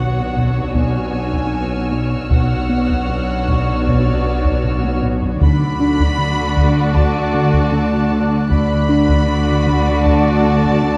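A tense, eerie suspense cue at 78 BPM opens on a veiled bed of muted strings: a lush violin melody over a second violin line, a faint high violin texture, viola accompaniment in the background, and a very quiet cello and a smooth-topped double bass section holding the low end. A retro, glossy chorused synth bass riff, a very quiet detuned string-like drone and a dry, ringing vibraphone texture share the space. Taiko with heavy sticks enter at 0.4 seconds, add a fill from 4.6 seconds as the harmony shifts from B minor add9 to D at 5.4, and it all sits in a moderate concert-hall reverb with a dark, warm production.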